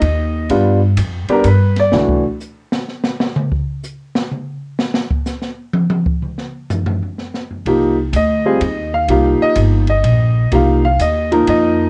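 Jazz piano trio in a smoky, late-night mood, swinging in 3/4 at 126 BPM. The present, long-sustaining grand piano and a woody, thumpy pizzicato upright bass with gut strings sit up front over G7. Both drop out at 2.2 seconds for a drum solo on a dark, smooth, small-room kit with boomy kick and dark cymbals, then return at 7.7 seconds over F7sus2 and Cm7. The whole fragment, cut from a longer piece, carries light reverb and the worn, warbly pitch drift of old cassette tape.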